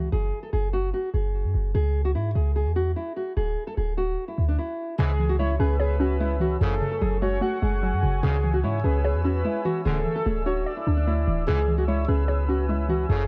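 A thumb-plucked nylon-string guitar carries the melody up front, its fresh strings and finger squeak softened by a low-pass filter and trailed by delay. This eerie, hard-hitting hip hop cut moves at 148 BPM in a half-time feel, set in C# phrygian and moving through chords such as C#m, F#sus2 and Dsus2. Underneath, a clean 808-style bass sits as the loudest part, deep and boomy with a sine-like, fast-attack, decaying punch. After a brief stop at 4.6 seconds, the second section arrives at 5.0 seconds and brings back a hollow, bouncy square-wave pluck, heard only for a moment at the very start. It is joined by a round, octave-layered synth lead with chorus and vibrato, and by warm classical-style brass stabs. A moody, warbling ambient pad with vintage detuned character and built-in reverb joins at 5.6 seconds to hold sustained chords high above, all set in a studio room sound.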